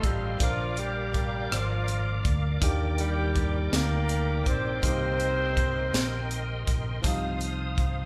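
Slow, soulful gospel in a straight 6/8 with a hopeful glow, where a breathy tenor saxophone with light vibrato and scooped notes carries the melody alongside a distant, roomy horn section until 6.6 seconds, over a woody upright piano with audible action noise, a reedy tonewheel organ with key click and fast rotary shimmer holding chords, a round, dark fingered electric bass and a punchy, up-front drum kit with a high-tuned snare and rim clicks, all played live in one large studio room with moderate reverb and lossy compression artefacts.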